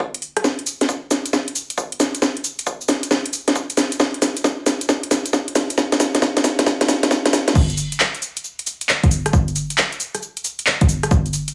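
Sunny and soulful, this UK garage excerpt moves at 135 BPM in 4/4, with a 66% swing on the sixteenths giving it a skipping, shuffled bounce. An analog electronic kick drum sits up front with a punchy thud and a high-pass filter on it, starting at 0.0 seconds. Beside it, a layered, produced house drum kit adds crash cymbal, handclaps, hi-hat, rim click, shaker and a cracking snare, its metallic hats and tape-tinged character passed through high-pass filters on the hats, snare, percussion and cymbals. The opening stretch is a build-up carried by a long drum fill, and at 7.6 seconds it breaks into the drop, which runs to the end at 11.5 seconds. The whole mix is heavily compressed for a radio-style sound, with a wet studio reverb and small room ambience lending a short, tight sense of space.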